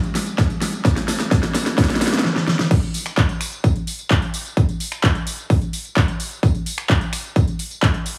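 EDM at 129 BPM in a straight 4/4, this short cut from a longer piece feels euphoric and powerful. It opens with a build-up driven by a big-room dance drum kit, whose fills run through the first 2.7 seconds, mixing crash cymbal, finger snaps, handclaps, hi-hat, snare drum and tambourine. An electronic kick drum joins at 0.4 seconds, punchy and layered, and sits up front with overdrive on it. At 2.7 seconds the track hits the drop, where the kit's huge snare and metallic hats, also overdriven and up front, carry the energy until the end at 8.2 seconds. A moderate recital hall reverb with a digital ambience gives the produced drums a sense of space.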